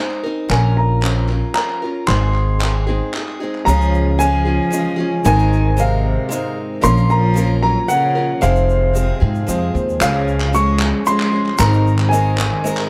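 A dry, close recording with a 1970s studio character and a small-room ambience carries this uplifting, anthemic stretch of indie folk, cut from a longer piece and moving in a straight 3/4 at 114 BPM in Db major. A picked, boxy ladder-braced acoustic guitar opens the passage, joined at 0.5 seconds by a woody upright piano with long sustain carrying the melody high in its register and a thumpy, up-front pizzicato upright bass underneath. Crisp group handclaps, distant as if heard in a large room, mark the opening bars and return near the end at 10.0 seconds. At 3.7 seconds the arrangement builds: a rich, focused cello played by one bowed player with vibrato adds a second line, a dark, mellow grand piano settles into the background as accompaniment, and a grainy, bright tube shaker fills in the percussion. The harmony circles through Abadd9, Bbm, Ab, Db and Fm, giving the growing texture a hopeful lift.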